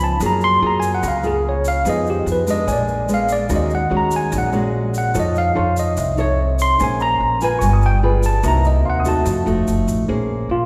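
A clean tine electric piano carries the melody up front in this melancholic, intimate bossa nova, heard through its built-in speakers as it solos over rich extended chords such as Gbmaj9 and Bb7b9. Dark, classical fingerpicked nylon-string guitar, with audible finger squeak, also sits up front, joined by a woody, thumpy pizzicato upright bass and a grainy, bright tube shaker placed close. From 1.0 s a smooth, vintage concert grand piano adds high voicings in the background, and a wet recital hall reverb surrounds this fragment of a longer piece.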